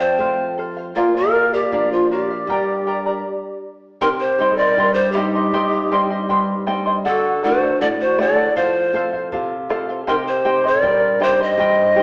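Breathy, bright cane pan pipes carry the melody up front in this earthy, wistful Andean folk excerpt, their crisp, chiffy attack and vibrato ringing in a stone room. Beneath them, a mellow wooden quena plays a second line, end-blown and airy with tongued notes, vibrato and rolled-off highs. A fingerpicked charango adds a shimmering layer of double strings, some doubled at the octave, while a warm, fingerpicked flamenco guitar fills out the lower register. A deep, dark bombo sits close and dry in the background, and the music moves in a straight 2/4 at 79 BPM. The band halts briefly from 3.3 to 4.0 seconds before a second section turns through Cm, D and F, with the whole performance heard as a live group in one reverberant room through a small-speaker sound.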